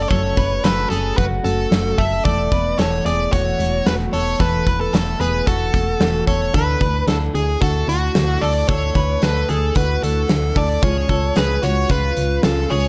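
A dark, overdriven lead guitar carries a bittersweet, wistful melody up front from the opening, its slapback echo set over a full-bodied picked steel-string acoustic and a slightly broken-up, lo-fi electric guitar playing arpeggios through lush chorus. A punchy, round FM bass and a big rock drum kit with a punchy kick, medium-tuned snare and hi-hat drive this jangly indie pop excerpt at 112 BPM in a straight 4/4. The chords move from F#m through Esus4 and Dsus2 to C#, all set in studio reverb with a dark, warm production.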